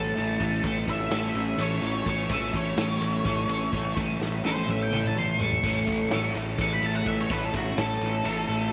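Trippy and hypnotic, this psychedelic rock excerpt drives along in a straight 7/8 at 252 BPM in A major, with an up-front octave-fuzz lead guitar soloing throughout, its distorted tone trailed by tape echo, over a twangy, double-tracked twelve-string electric riff spun through a rotary speaker and a round, overdriven fuzz bass holding the low A. A very quiet, reedy hand-pumped harmonium breathes a drone beneath, while a raw garage drum kit with a punchy kick, gritty saturation and a rolled-off top enters at 0.2 seconds and throws in a fill from 4.2 to 5.6 seconds. The whole sits in light small-room reverb on a single unchanging chord.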